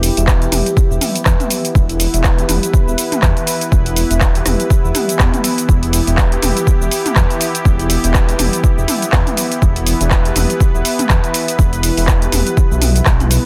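A smooth, warbling analog pad with chorus, a round soft-mallet marimba playing arpeggios through dub echo, a deep, rumbling detuned saw bass and a deep house kit of handclaps, dark hi-hats, rim click, shaker and toms all open this earthy, warm afro house excerpt in E minor at 122 BPM with a swung 16th-note feel, before a punchy, up-front electronic kick joins at 0.3 s, with the pad, marimba and bass all pumping against it in a dry, dense, heavily limited modern mix that stays on an E minor chord throughout.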